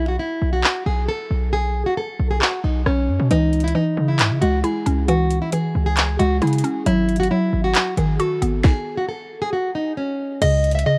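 Dark and menacing, this half-time trap hip hop excerpt opens on a bright, full-bodied fingerpicked nylon-string guitar melody over a punchy, heavy 808-style bass, with electronic drums (hard-clipped kick, sharp snare, metallic hats, handclaps and rim clicks) arriving at 0.6 s and a woody, round FM synth pluck with chorus joining at 3.3 s before a stop at 8.6 s, the dry mix colored by the pitch drift of worn cassette tape.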